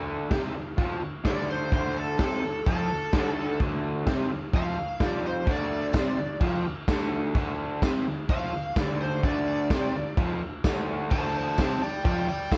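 Cut from a longer piece, this has the grainy character of cassette tape and a light reverb. It is menacing, raw garage rock in D minor, moving at 128 BPM in a straight 4/4 and resting on a single D minor chord. A crunchy, double-tracked overdriven guitar opens with a picked riff sitting low and up front. The drum kit joins at 0.3 s with crash cymbal, a punchy kick and a medium-tuned snare; it sounds gritty and saturated, with a rolled-off top in a bright stone room. At 1.3 s an overdriven slide guitar enters, played with fingerpicks, and carries a bright solo melody high above the riff. From 5.9 s a jingly tambourine adds a little shimmer in the background.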